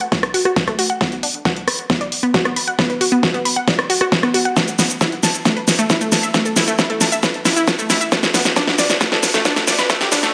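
A straight 4/4 pulse at 135 BPM drives this bittersweet, emotional stretch of uplifting trance in B minor, cut from a longer piece and built entirely as a build-up with a drum fill running across its full 10.3 seconds. The big-room dance drum kit sits up front with a huge snare, hi-hat, rim click and shaker, its hats and percussion pumping against the sidechain in a small room ambience. An electronic kick drum, layered and punchy, enters at 0.1 seconds and stops at 10.0, thinned by a high-pass filter and placed in the same small room. A unison pluck carries the arpeggios from A3 to B5, its detuned sawtooth and sine layers with a noise layer giving a lush, full-bodied tone with a fast attack and short decay, colored by cassette tape, delay and sidechain pumping. A filter sweep moves over the synth arpeggio throughout, and the whole mix sits in a moderate digital room reverb with a high-pass filter, heightening the sense of rising anticipation.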